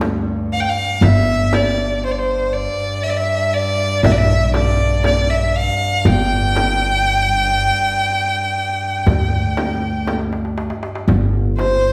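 A rich, smooth violin carries the melody with vibrato and even bowing, sitting up front yet sounding distant, over an Arabic maqam ensemble in G maqam rast at 119 BPM in a straight 10/8 with a passionate, warm mood. A dark, woody upright bass plucks a growly, thumpy line while a bright, biting double bass holds a nasal, earthy bowed drone on G, and a crisp, deep metal-shell darbuka, very quiet, plays alongside a frame drum struck with hard hands, both close and dry. The whole is heard from further back in a wet recital hall, with a drum fill from 10.1 to 11.1 seconds near the end of this short cut from a longer piece.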